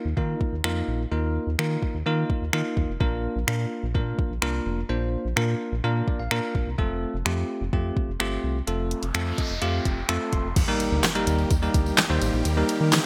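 Dance-pop with a euphoric, summery glow, cut from a longer piece and given a bright 1980s-style digital production with light reverb. A bell-like tine electric piano carries the accompaniment up front, adding short fills, over a round, deep analog bass with sidechain pumping and a smooth R&B drum kit of soft kick, fat snare, hi-hat, handclaps, finger snaps and crash cymbal. A noise sweep from 8.9 seconds leads to an impact at 10.6 seconds, where huge, lush supersaw chords, also pumping, settle in the background alongside a jingly, very quiet tambourine.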